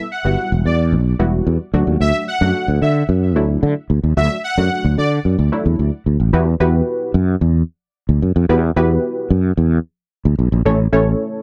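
Bittersweet yet confident, this dance-pop fragment moves in a straight four-beat pulse and sits in a dry, close studio sound with a 1970s character. A soft supersaw carries the melody in a narrow upper register, its detuned unison tone smooth and full-bodied, trailed by tape echo until it drops out at 5.1 seconds. Beneath it, a funky polysynth comp punches through the whole passage, nasal and dark with a filter-swept, sub-octave edge and a chorus shimmer. A sustaining fretless electric bass enters at 0.2 seconds and stands up front, growly and amped in its low range. The harmony moves between Emadd9 and D, then returns to Emadd9 at 6.3 seconds as a second section begins, closing on A.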